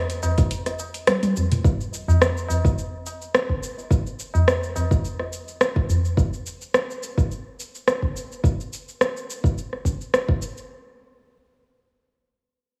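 An electronic afro-pop drum kit opens this meditative, warm downtempo excerpt at 106 BPM with a light 16th-note swing, its metallic hats, cabasa, rim clicks and toms sitting up front with studio reverb. A high-tuned, ringing tabla, close and dry, joins almost at once and plays until 6.0 s, while a deep, overdriven electronic kick, layered and re-recorded in a small room, drops out briefly as a drum fill leads into its return. A light small-room ambience surrounds the parts, and the kick carries on until 10.4 s.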